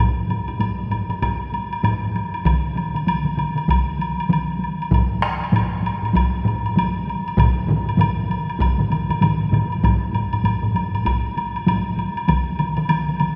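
A woody woodblock opens this powerful, ceremonial Japanese traditional ensemble excerpt at 98 BPM in a swung 4/4 at 0.0 s. It is soon joined by layers of taiko drums played with heavy and hard sticks, one sitting close in the background. The last, a compressed, saturated taiko struck with hard sticks, enters at 2.5 s, and another drops out at 11.8 s, all bathed in a long church reverb that leaves the top end dull.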